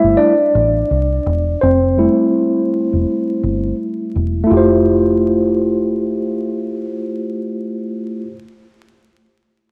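Relaxed and warm, this short clip cut from a longer jazz-hop piece moves at an unhurried 83 BPM in 4/4, with a 60% swing on the sixteenths in F major, tuned to A4 = 444 Hz. A clean tine electric piano, heard through its built-in speakers and colored by cassette tape, carries the accompaniment up front and takes a solo for the first 4.5 seconds. Beneath it, a deep dub fingered electric bass sits low and close, its tone dark, round and foam-muted with a direct, amped character. The harmony rests on Fmaj9, voiced rootless at the opening and returning as the second section begins at 4.5 seconds. A lush hall reverb and vinyl crackle give the home cassette recording a hazy, lived-in atmosphere.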